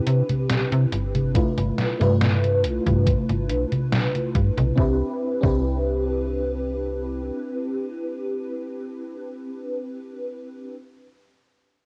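This short cut from a longer piece has the hazy feel of a home cassette recording, wrapped in a digital ambience. It is a dreamy, woozy vaporwave groove in straight 4/4, drifting from Cmaj9 to G13 and returning to Cmaj9 at 4.8 seconds. Up front, an FM electric piano layered with a soft pad carries the accompaniment, its lush, triangle-edged tone with a faint noise layer thickened by phaser, ensemble chorus, analog delay and cassette tape. A slap-like FM bass sits beside it with a snappy, metallic attack and a decaying body, stopping at 7.3 seconds. A detuned 8-bit drum machine, re-recorded in a small room and run through cassette tape, supplies congas, hi-hat and a medium-tuned snare. A thumpy electronic kick, with the same small-room and cassette treatment, joins at 1.4 seconds.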